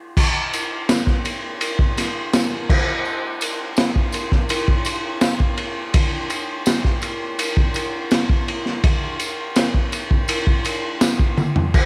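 A gritty, saturated rock drum break sits up front in a small room with light studio reverb, its punchy kick, medium-tuned snare, toms and shadowy crash and ride cymbals carrying a rolled-off top that feels trippy and dark. Behind it, a jingly, bright tambourine plays from a distant large room, tucked into the background. Cut from a longer piece, this straight 4/4 groove runs from 0.2 seconds and closes with a drum fill at 11.4 seconds.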